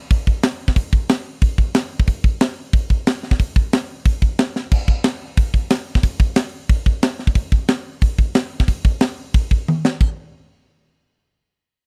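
Heavy and dark, this metal excerpt is carried entirely by a tight acoustic drum kit in straight 4/4. The drums play from 0.1 seconds to just past ten seconds, using crash and splash cymbals, hi-hat, kick, snare and toms. A high-tuned snare and tight kick sit up front, while bright cymbals add a polished edge to the kit's big-room character. Drum fills mark 4.5 seconds and the closing stretch from 9.7 seconds, leading into a brief new section as the piece is cut. The sound is dry and close, with a 1970s studio feel and very little reverb.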